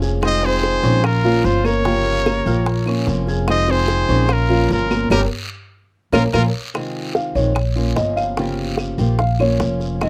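A dry, close recording in a 1970s studio style carries this short cut from a longer Cuban son and guajira piece, danceable and warm at 147 BPM in a straight 4/4. A brilliant, up-front trumpet leads the melody with vibrato and scooped notes, while a clear, punchy second trumpet sits distant and roomy in the background, both playing until 6.4 seconds. Underneath, a picked, boxy old ladder-braced acoustic guitar supplies accompaniment, and a thumpy, gut-strung upright bass stays up front with woody pizzicato. A dark, mellow concert grand piano with deep bass plays arpeggios throughout. The percussion blends tight, high-tuned bongos played with soft hands, a raspy guiro in a live room, and woody claves that enter at 0.2 seconds, with the bongos and claves sitting back in the mix. After a band accent, the piano takes a solo from 6.7 seconds over harmony moving through Fm7, Gm7b5 and Bbm.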